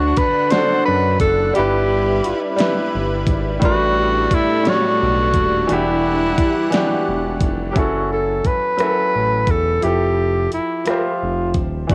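A breathy, whispered tenor saxophone sings an intimate, up-front jazz-style melody with vibrato and scooped notes over clear, open baby grand piano, a smooth sawtooth-and-square synth bass, and a thick, detuned, chorused unison pad that ends at 7.7 seconds, while a produced electronic pop kit with a knocking kick, fat snare, bright hats and rim clicks enters at 0.2 seconds to carry this late-night, yearning six-eight R&B piece at 58 BPM through chords from Dmaj7 to Fmaj9, all wrapped in light reverb and the feel of a home cassette recording.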